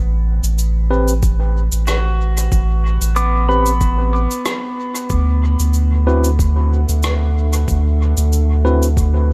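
Ambient dub at 93 BPM with a light 16th-note swing, hazy and meditative in this short excerpt, built on a deep, round sine sub bass held up front and a muffled, pitched-down electronic kick. Distant, roomy cabasa and rim click carry dub echo, while a bright, barky tine electric piano enters at 0.9 s with lightly overdriven stabs that also trail into dub echo. A nostalgic, detuned lo-fi pad fades in behind with chorus and reverb, and a clean pedal steel guitar with fingerpicked arpeggios, slide and volume swells drifts through tape echo from 1.9 s to 6.6 s as the harmony moves from Asus2 to D69 at 5.1 s, all set in studio reverb over a faint mains hum.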